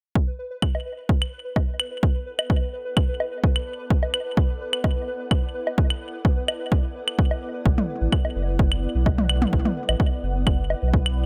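Cool and hypnotic, this minimal techno excerpt rides a straight 4/4 pulse over a B minor chord, with a bright, dry digital sheen that recalls 1980s production. A punchy, tape-warm electronic kick drives from the start alongside a pulsing, tempo-synced gated texture holding a single high note, its detuned unison tone thickened by chorus and reverb and pumping against the beat. Layered, overdriven electronic claves, woodblock and toms sit up front, their hits trailed by digital delay. A cloudy granular pad fades in behind them from 1.8 seconds, its slow attack and long release leaving a blurred, evolving haze that breathes with sidechain pumping. At 7.7 seconds a deep, thick saturated sub bass arrives with a fast attack, anchoring the low end and pumping along with the kick.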